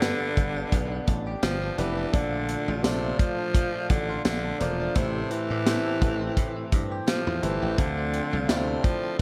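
1980s-style pop at 85 BPM with a light sixteenth-note swing, this moody, nostalgic fragment from a longer piece sets a raspy, gritty tenor saxophone up front on the melody, its scooped notes and vibrato carried by tape echo over chords moving from G through Bbmaj7 and Am7 to Dm7. Beneath it, a polished baby grand piano with long sustain and a twangy, compressed clean electric guitar riff, treated with analog chorus and tape echo, sit in the background, while a dry, foam-muted thumbed slap bass stops at 8.8 seconds. A punchy studio drum kit with a high-tuned snare, hi-hat, kick and tambourine drives the groove through gated reverb, all within a small, lightly reverberant room.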